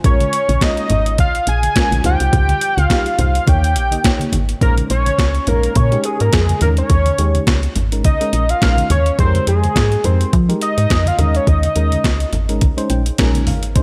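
Early-eighties boogie funk in Bb dorian at 105 BPM, funky and danceable, with a swung sixteenth feel driven by a thumpy, up-front 12-bit drum machine, a woody, round FM bass and very quiet low-tuned congas, all set in light digital ambience. A dark FM electric piano with slapback echo comps through chords such as Bbm7, Dbmaj9#11 and Eb7 before moving on to Bbm11 and Fm11, while a fat, detuned analog lead with chorus and vibrato takes a mellow solo from 4.6 seconds. The electric piano adds a short fill from 12.6 seconds to close this excerpt cut from a longer piece.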